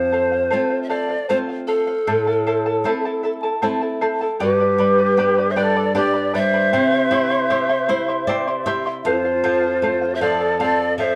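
Festive and earthy, this Andean folk clip in 3/4 sets an airy, close-miked pan flute melody, tongued with expressive vibrato, over a shimmering fingerpicked charango with double strings and a fingerpicked flamenco guitar whose fresh strings squeak under the fingers; a breathy, bright large quena enters at 4.4 seconds with a soft-attacked second line, a nylon-string guitar fill arrives at 7.5 seconds, and wet spring reverb, a placement further back in the room and vinyl crackle lend the recording a faraway feel.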